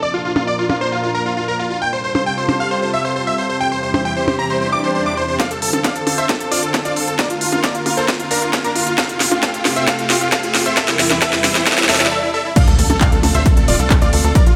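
A soaring, emotional uplifting trance passage in D minor at 134 BPM opens with a huge, euphoric supersaw lead carrying the melody with 12-bit sampler grit and tape echo, a clear grand piano tracing a second line in the background, and a lush, detuned unison pad holding chorused chords under a filter sweep, joined almost at once by a techno kit of cracking snare, smooth hats, claps and cymbals. A punchy, tape-warm kick at 5.4 seconds then helps drive a build-up with a drum fill, a brief break and electronic swells, risers and impacts, until the drop at 12.6 seconds brings in a tight, nasal sequencer bass, with most parts pumping against the sidechain in light reverb.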